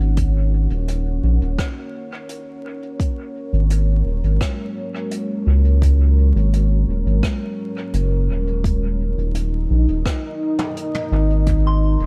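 Deep and meditative, this ambient dub fragment rests on a dark, warbling detuned pad with chorus and built-in reverb, holding sustained chords under a round, up-front analog bass. An electronic kick and a jazz brush kit, playing hi-hat, rim clicks and toms with dub echo, enter at 0.2 seconds, while the harmony moves from Ebm7 to Ebm at 8.6 seconds. The drums stop at 11.6 seconds, a soft, pure FM bell with chorus appears at 11.7 seconds, and the whole sits in a small, echo-heavy room with vinyl crackle.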